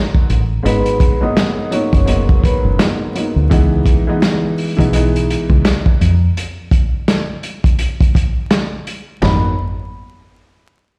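Vinyl crackle and a stone-room echo, as if played over a big sound system in a bare room, frame this moody, dark boom-bap hip-hop excerpt at 84 BPM in G# minor with a swung 16th feel, where a muffled, lo-fi vintage drum kit with a tight kick and medium-tuned snare sits up front beside a round, punchy, foam-muted dub bass and a woody, mellow upright piano moving from G#m7 to C#m7, while a metallic, ringing vibraphone with soft mallets, slow motor vibrato and digital delay carries the melody briefly near the start, very quiet finger snaps join at 1.4 seconds, and a break from 6.4 seconds suspends the chords before G#m7 returns at 9.2 seconds.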